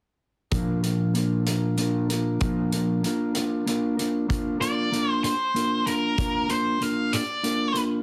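Quiet-loud alternative rock in a straight 6/8, dark and angsty, this short excerpt opens with a mellow, clean electric guitar fingering arpeggios up front over a loose indie drum kit of hi-hat and tight kick, its small room pumping around it. At 4.6 seconds an octave-fuzz lead guitar, picked and distorted with slapback echo, joins up front with a gritty melody. Light reverb and a heavily compressed, radio-like sound give the whole a boxy, squeezed character.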